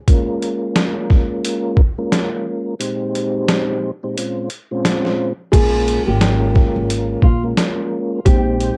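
Boom-bap hip-hop cut from a longer piece, moody and gritty, where a soft, flute-like tonewheel organ turning on a slow rotary speaker and a compressed, pitched-down sampler drum kit with a thumpy kick carry the opening break before a thumb-plucked nylon-string guitar melody and a woody pizzicato upright bass join at 5.5 seconds, the whole recording dry and grainy from its home cassette capture.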